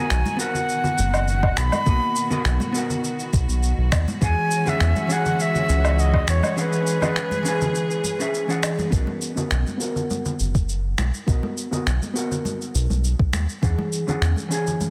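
Awash in a lush hall reverb and pressed into a dense, heavily limited modern master, this short cut from a longer sunset chillout piece in B major has a sunny, relaxed mood at 102 BPM in a straight 4/4. A bright, airy concert flute with a reedy edge and gentle vibrato carries the melody through tape echo until 8.3 seconds, while clear symphonic strings hold smooth, bowed chords beneath it until 8.9 seconds. A dark, clean hollow-body jazz guitar picks its accompaniment through a low-pass filter and tape echo across the whole cut, and from 8.9 seconds a filter sweep reshapes its tone. Low down, a round, deep analog bass blending sawtooth, sine and triangle tones sits up front with a fast attack and detuned, evolving body. The rhythm comes from gritty, sampler-style finger snaps, shaker and woodblock with soft clipping on the snare, ringing acoustic congas, and a soft, tape-warmed electronic kick that enters at 1.4 seconds. 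The harmony moves between Bmaj7 and E69, with a break from 6.6 to 8.9 seconds before the second section begins.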